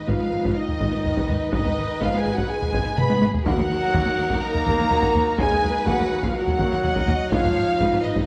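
A mellow French horn section and heavy-stick taiko drums drive this dark, epic orchestral film-score excerpt in Eb minor at 124 BPM, with bowed violins carrying a lush, vibrato-rich melody over darker background violins, a faint airy flute ensemble, a smooth viola accompaniment and very quiet cello and double bass sections anchoring the bass. Distant trombones hold sustained chords beneath the horns while a background trumpet section adds stabs, the harmony moving from Abm to Ebm at 3.5 s and back to Abm. A drum fill at 3.0 s leads into a brief, very quiet hard-mallet timpani hit at 3.5 s, all set in a wet concert-hall reverb.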